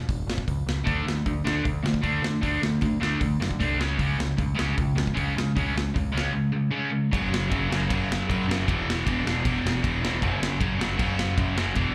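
A straight 4/4 at 154 BPM pushes this energetic, rebellious punk rock excerpt, heard live through a club PA, where a growling, overdriven picked bass opens at 0.0 s, a big punchy rock kit with crash, hi-hat, kick and snare joins at 0.1 s, and a bright, double-tracked distorted guitar riff enters up front at 0.8 s, moving through D5 and C#5 power chords before a second section from 7.1 s shifts between F#5 and E5.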